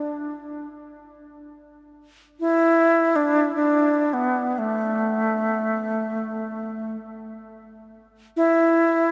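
A bright alto flute opens the recording alone and carries it for its full 9.1 seconds, playing in free time in the range from A3 to E4. This is world meditative music, peaceful and spacious, and it sounds like a short section cut from a longer piece. The flute's tone is airy with lifted highs, its notes are tongued and shaded with vibrato, and it sits up front in the mix with delay applied. A huge ambient reverb, lasting about 4.9 seconds, surrounds it and gives the space a sense of great depth. A faint mains hum lies underneath, and the instrument is tuned to A4 = 443 Hz.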